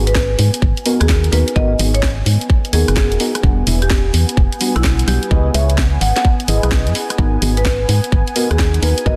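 UK garage in a two-step style, this soulful, skippy clip moves at 128 BPM in G# minor with a 65% swing on the sixteenths, cycling through G#m7, Em7 and C#m7 before returning to G#m7 at 7.2 seconds. A hollow, organ-like FM bass sits up front with a dark tone, a fast attack and a decaying tail, matched in level by a tight, layered electronic kick that enters at 0.2 seconds. The garage drum kit brings hi-hat, rim click and a cracking snare, both drum parts carrying a small room ambience. Deep, mellow chord stabs with a soft, detuned filter pluck are coloured by chorus, phaser and delay, while a smooth, warbling vintage analog pad holds sustained chords underneath with chorus and sidechain pumping. Over this, a woody marimba played with medium mallets carries the melody, mid-forward and trailed by delay. Light reverb surrounds a dense, heavily limited modern master that shows some lossy compression artefacts.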